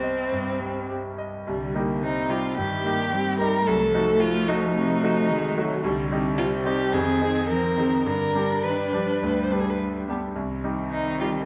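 A quick, restless classical-period movement for piano quartet in 4/4, cut from a longer piece, its stormy mood pushed along by uneven, rubato beats. A bright, brilliant concert grand with a worn edge and deep bass sits up front, while the cello's soft-attacked second line sounds beneath it from the start, joined by a dark, smooth-topped viola in the background at 1.5 seconds. At 2.0 seconds a rich, expressive violin carries the melody with vibrato and portamento, the harmony darkening through a diminished chord before settling back home, all set in a wet recital hall.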